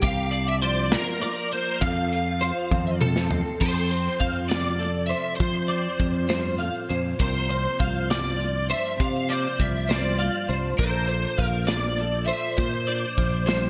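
A crunchy, overdriven electric guitar carries the melody up front, its picked lines thickened by ensemble chorus and trailed by delay. Beneath it, two clean, compressed twelve-string electric guitars shimmer with chorus: one picks out the chordal accompaniment, while the other, twangier, spins arpeggios high in its range through its own delay. A bright, fingered electric bass sits direct and forward, and a modern studio drum kit with a punchy kick, medium-tuned snare, hi-hat, toms and crash cymbal drives the 6/8 sway, its gated reverb adding punch. A drum fill from 2.7 to 3.6 seconds launches a new section, where the harmony moves from F back to a suspended C chord and on to a Bbmaj7. The whole piece has a bright, playful math rock and midwest emo feel, set in a glossy 1980s-style digital production with a moderate plate reverb, and it is cut from a longer piece.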